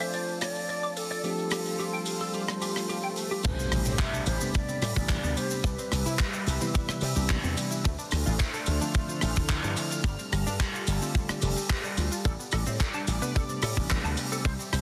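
A growly, punchy slap bass with an envelope filter and tube saturation sits up front in this groovy, sleek nu-disco passage in A minor at 109 BPM, arriving with the tight kick drum at the drop around 3.4 seconds, where a round, wave-folded analog pluck also starts its chorused, delayed arpeggios in the background. From the opening, a mellow, hollow concert flute with vibrato carries the melody through delay until about 6.2 seconds, over a clean tine electric piano that gets a filter sweep, a lush, warbling detuned pad that pumps with the sidechain, and a bright, twangy clean guitar riff with dub echo that returns at 12.3 seconds. An up-front acoustic kit with hi-hat, rim click, handclaps, cabasa and crash, background maracas, and a very quiet electronic swell and impact fill out the dense, heavily limited mix over Dm7, G9sus4, Am11 and Cmaj7 chords in a small room.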